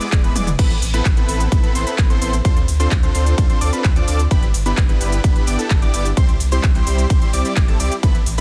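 A punchy, up-front electronic kick drives this euphoric, anthemic slice of festival progressive house, with a drum fill at 0.4 seconds leading into the drop at 0.6 seconds. Lush, bright supersaw chords carry the riff through Amadd9, Dm7, G6 and C. A thick, saturated sub bass sits beneath, both pumping with sidechain, while a bold, mellow unison lead with vibrato spins high arpeggios through delay. A layered big-room kit with crisp hats, claps, shaker, toms, ride and crash adds tape-warm sheen, all set in digital ambience under a dense, heavily limited modern master.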